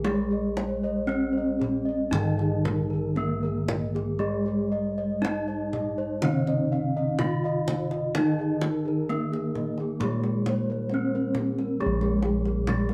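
In a straight 4/4 at a stately 58-68 BPM, this ceremonial, shimmering Javanese gamelan fragment of 12.9 seconds sets a bright, horn-mallet bronze metallophone melody up front over a wooden-mallet metallophone accompaniment and a metallophone arpeggio line in the background, the metallophones all ringing with the beating shimmer of paired tuning. High bossed gongs struck with padded beaters add mellow arpeggios, while round, boxy bossed gongs carry the bass and a tight, band-limited, vintage-sounding kendang is played with hard hands, all within a light reverb.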